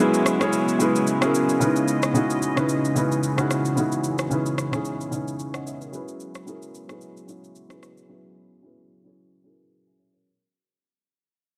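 Hypnotic and soulful, this amapiano passage at 111 BPM with a lightly swung 16th-note feel sets an open, up-front baby grand piano and a nasal, reedy bowed string section with a gut-string, period-style tone over F#9sus4 and C#m9 chords, while a tape-warm electronic shaker and rim click play until a break at 8.1 seconds, all in a small room with light reverb under a filter sweep and a fade-out that runs through the whole 10.3-second cut.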